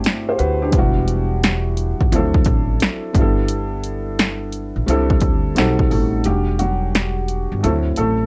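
This lo-fi hip hop excerpt sits in a melancholic, hazy E minor at 87 BPM, with a 16th-note swing, tuning slightly sharp at A4 = 445 Hz, and the sound of cassette tape in light reverb. A muted, mellow, intimate felt-dampened upright piano, boxy and thin with audible action noise and filtered soft, comps through jazzy chords such as C69, Em9 and B7b9b13 over a woody pizzicato upright bass. A dry, punchy analog drum machine sits up front with hi-hat, kick and snare. At 6.3 s the kick drops out and the piano takes a solo.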